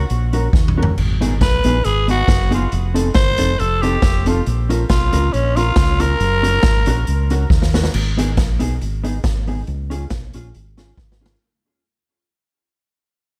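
A growling tenor saxophone leads this mischievous, driving ska excerpt at 138 BPM in G# dorian, its raspy, lightly vibrato-tinged solo line trailed by dub echo over a mellow, compressed electric guitar that carries the same echo, a round, punchy fingered bass and an airy street-band drum kit with dark cymbals and a boomy kick. The saxophone drops out at 7.5 seconds, leaving guitar, bass and drums to carry a second section over G#m and C# while the sound fades out from 7.9 seconds. Drum fills mark 0.5, 7.5 and 11.0 seconds in a small room.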